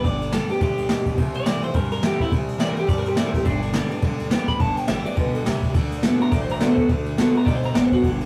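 Rollicking and rowdy, this short excerpt from a longer rockabilly piece races along at 210 BPM in 4/4 with a light swing on the eighth notes, set in G major. An electric guitar through a small old amp carries a clean, twangy solo melody from start to finish, bright and slightly broken-up, while a second amped electric guitar, more lo-fi in character, picks out a low riff beneath it. A picked steel-string dreadnought acoustic guitar with fresh strings adds bright accompaniment, and a pizzicato upright bass with a woody, growly tone sits in the background. Up front, a jazz kit played with brushes gives a boomy kick, a medium-tuned snare and dark ride cymbal in an airy, polished studio room. The harmony moves from G to C at 1.2 seconds, back to G, then to D at 5.7 seconds, all heard through a wet booth ambience and a rough rehearsal-room sound with warm saturation.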